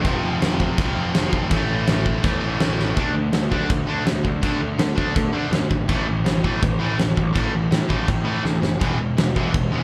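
A straight 4/4 punk rock groove at 164 BPM drives this upbeat, rebellious excerpt, with a big, dark acoustic drum kit up front, its fat snare, punchy kick and crash cymbal rolled off at the top, adding fills at 2.8 and 8.4 seconds. Two bright, picked electric guitars play riffs throughout, one overdriven and sitting in the background, the other distorted, compressed and scooped, while a growly fuzz bass, direct and amped, holds down the low end. The chords move from F to A before shifting to D5 at 3.0 seconds, then A5 and E, all captured as a band playing live in one room with light reverb.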